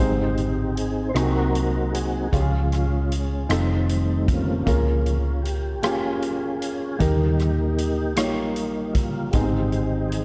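A lightly reverberant mix puts a mellow, flute-like tonewheel organ up front, its fast rotary speaker and chorus vibrato shimmering over soft sustained chords as it takes the solo in this uplifting, hopeful slow gospel passage in Ab major, a short excerpt from a longer piece at 51 BPM in 6/8. Beneath it, a vintage grand piano with short sustain plays smooth accompaniment, while a round, punchy hollow-body short-scale electric bass sits forward with a dark, amped tone. From 0.4 seconds a big-band drum kit with a boomy kick, rolled-off top and roomy hall character adds hi-hat and rim clicks as the chords move from Ab through Db, F7 and Eb back home to Ab.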